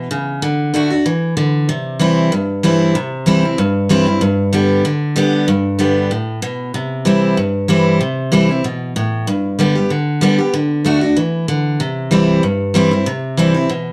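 A picked steel-string acoustic guitar plays alone and up front in this lively, rustic cut from a longer bluegrass piece, its bright, fresh-stringed tone set in moderate studio reverb within a dark production as the harmony moves among D, C and G in a straight four-beat feel.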